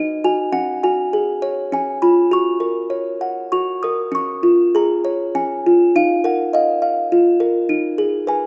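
The music moves in a gentle three-beat metre with a free, rubato feel, drifting like a lullaby for children. A single music box carries the whole excerpt from start to finish, its delicate, tinkling plucked tones spanning from C#4 up to D#6. It has the mellow, full voice of a large box, close-miked and placed up front in a moderate scoring-stage reverb. The harmony opens on B/D#, passes through a suspended chord and settles onto C# and F#, then a second section begins at 4.1 seconds, passing through C# and D#sus2 before resting on G#m/D# at 7.7 seconds. Tuned slightly below standard pitch, the piece feels sleepy and innocent throughout.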